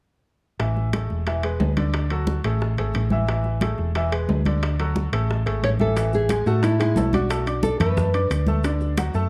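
Joyful and festive, this salsa excerpt rides on a brilliant, worn concert grand piano accompaniment with deep bass and a round, up-front hollow-body electric bass, while thick-skinned congas, tight high-tuned bongos and ringing metal-shell timbales fill out the percussion. A dark, full-bodied nylon-string guitar enters at 5.6 s with a fingerpicked classical melody, and grainy, mellow maracas join in the background at 6.0 s as the second section begins. The production is warm, with light reverb.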